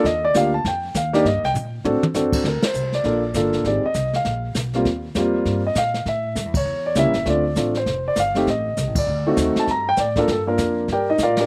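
Dry and nearly reverb-free, this excerpt of a smoky, swinging jazz piano trio in G minor at 199 BPM features a warm, up-front concert grand carrying the melody with deep bass and a slapback echo, a woody, plucked upright bass, and a dark, smooth brush kit with dark cymbals and a boomy kick that plays a fill at 1.5 seconds before the band hits accents over rich chords like Abmaj7#11 and D7b9.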